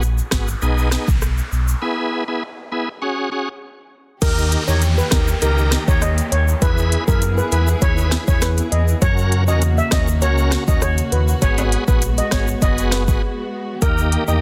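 A dense, heavily limited modern master in digital ambience carries this sultry, bouncy dancehall cut, where a shouting, lightly overdriven tonewheel organ with chorus vibrato and key click rides over a deep, sine-like sub bass with octave and an up-front electronic afro-pop kit with a deep kick, sharp snare and smooth hats. Tube shaker, timbales and a noise sweep sit in the background, and a shimmering, mellow steel pan lead with tape echo and an intimate bowed string section with sidechain pumping enter at 4.2 seconds.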